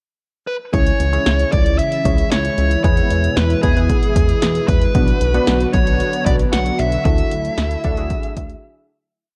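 Synth-pop with a nostalgic, wistful mood, this short piece opens with a brief pickup before settling into a pre-chorus over chords that move from C#m through E and Bm to Dadd9. A dark, overdriven electric lead guitar enters at 0.5 s with a picked, motif-based melody built in sentence-like phrases. Beneath it, a punchy analog drum machine plays a dry, straight beat up front, while a glossy, nasal synth bass pulses in eighth notes with a filter pluck and chorus. Round analog keys add syncopated chords in close voicing with a filter sweep, and a thick, detuned unison pad sustains in the background with a warbling, vintage chorus. The mix carries light reverb, and the track fades out from 7.1 s into a short break at 8.6 s.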